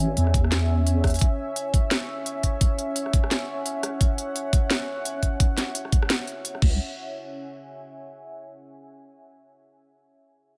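Set in a digital ambience with a muffled top end, this tense, spacious half-time drum and bass excerpt rests on a moody, warbling sawtooth pad with chorus, reverb and sidechain pumping that holds sustained chords through to 8.2 seconds, while a deep, compressed triangle-and-sine wobble bass with chorus sits up front in brief appearances, and a layered electronic kit with a cracking snare, crisp hats, rim click and crash plays from 0.2 to 6.7 seconds alongside a knocking kick that enters at 0.3 seconds, both re-recorded in a small room and placed close.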